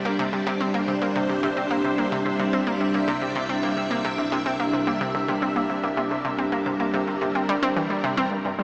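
Hypnotic and mysterious, this short cut from a longer piece of ambient, sequencer-driven space music moves at 109 BPM in a straight 4/4 over a Cadd9 chord. A bright, round analog pluck riff with analog delay sits up front beside lush, vintage string machine chords thickened by ensemble chorus and a moving notch, while from 0.7 s a mellow, warbling analog drone bass hums in the background, all set in a vast, echoing reverb with a small-speaker sound.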